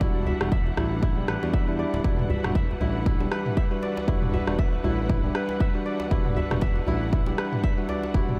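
A punchy electronic kick sits up front at 118 BPM in 4/4 with a 56% swing on the sixteenths, joined by a tight, cracking djembe and, from 0.4 seconds, a house drum kit with rim click and toms in the background, driving this hypnotic afro house excerpt in E minor on a single Em9 chord. A smooth sawtooth-and-triangle synth bass holds the low end beneath bright fingerpicked kora arpeggios with delay, bell-like electric piano stabs through a low-pass filter and delay, and a lush, distant bowed string section sustaining chords with vibrato. The bass, kora, electric piano and strings all pump with sidechain compression, and the mix carries light reverb and digital ambience.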